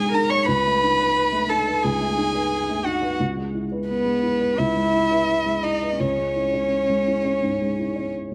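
A close, intimate sound in a moderate echo-chamber reverb frames this short excerpt of reflective, longing neoclassical piano and strings at a rubato 86 BPM in 4/4, tuned to A4 = 436 Hz, where a rich, airy-bowed solo violin carries the melody through tape echo with light vibrato, a single sul tasto cello adds a warm second line beneath it, and a boxy, dark felt-muted upright piano gives soft accompaniment as the chords move from B7/C# to E/C# and settle on C#m at 6.0 s.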